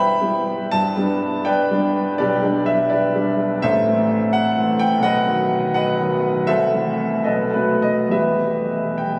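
Stormy yet bittersweet, this brief cut from a romantic classical character piece features a solo concert grand piano, clear and up front with deep bass and long natural sustain, moving in a rubato 6/8 at 68-87 BPM in E minor (tuned to A4 = 442 Hz) from Em/G through G, Am and B before settling on Em at 8.1 seconds, bathed in a wet cathedral reverb lasting 7.0 seconds and captured on a phone in the room.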